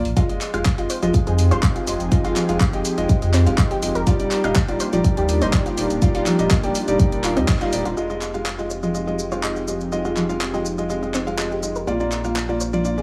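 A straight 4/4 pulse at 123 BPM drives this expansive progressive house excerpt in F dorian, with an up-front, deep electronic kick drum carrying the beat until it drops out at 7.6 s, while a tape-warmed deep house kit of handclaps, hi-hat and shaker keeps running underneath. A thick, saturated sub bass with a fast attack anchors the low end, pumping with the sidechain alongside the melodic parts. Soft, felt-muted upright piano stabs sit close and intimate, their short sustain and audible action noise passed through a low-pass filter and tape echo. An analog pluck spins detuned sawtooth and square-wave arpeggios with a noise layer, a moving notch and chorus, echoing on tape, while a lush unison pad enters at 0.8 s with slow-attack sustained chords and a long release in the background. The harmony moves from Fm7 to Ebmaj7, and after a band accent at 7.5 s the second section returns to Fm7 before landing on Bb, all bathed in light reverb for a driving, expansive feel.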